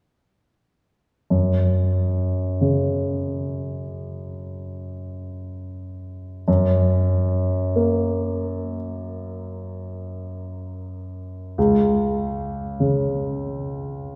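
A warm grand piano sits up front in this tender, lyrical classical fragment, taken from a longer piece. It plays an accompanying role, staying low in the instrument's range, and sounds from 1.3 seconds to 14.2 seconds. The music moves in 12/8 metre with a rubato feel, so the pulse bends and breathes rather than holding strictly. The harmony rests on a single chord until about 11.6 seconds, when it falls away and the piano continues with the chordal support gone. A lush church reverb with a long tail surrounds the playing, giving the sound the spacious resonance of a church or concert hall.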